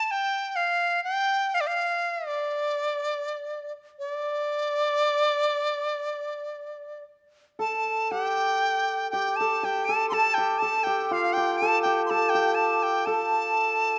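Graceful and wistful, this short passage of Chinese traditional chamber music drifts in a free, rubato 4/4 at roughly 56-63 BPM, and it is cut from a longer piece. A bright bamboo dizi carries the melody from the opening second, its pure tone edged by a buzzing membrane, with vibrato, tongued articulation and an expressive, up-front presence as it moves between D5 and C6. At 7.6 seconds a hammered dulcimer joins as a second line, sitting lower between F4 and A4 with a mellow, shimmering, ringing acoustic sound that is also placed close to the listener. The dizi has the stage to itself for most of the first section, and a second section begins at 8.1 seconds with both instruments sounding together through to the close at 14.0 seconds. A light reverb lends the ensemble a gentle sense of space.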